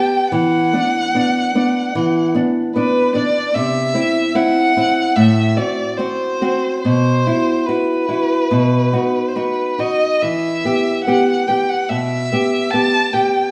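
Yearning and solemn, this romantic duo for violin and classical guitar moves at about 73 BPM in 4/4 with a loose, rubato feel, in a passage cut from a longer piece. The close, up-front bowed violin carries the melody with soft attacks, vibrato and expressive portamento, while the small-sounding nylon-string guitar is fingerpicked beneath it, with audible finger squeaks, through chords from Bm/E to a closing Em. Both players sound as if recorded live together in a small stone room, whose wet reverb gives the performance a resonant, intimate glow.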